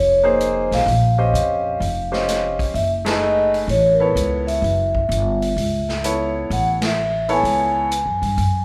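A wet recital-hall reverb surrounds this short modal jazz passage, lifted from a longer piece, giving it the spacious ring of a church or concert hall. At 128 BPM in 4/4 with a swung eighth-note feel, the mood is intense yet cool, moving from Bbm9 to Gbm9. A vibraphone played with soft mallets and its motor off carries the melody, its metallic, ringing tone kept mellow, dark and smooth. Underneath, a pizzicato upright bass with steel strings sits up front, woody, growly and thumpy, while a clear concert grand piano with deep bass and long sustain supplies the accompaniment. A swinging big-band drum kit on hi-hat, kick, ride and snare sounds distant and roomy, with a boomy kick, a medium-tuned snare and a rolled-off top. The band hits accents together at 3.0 and 6.7 seconds.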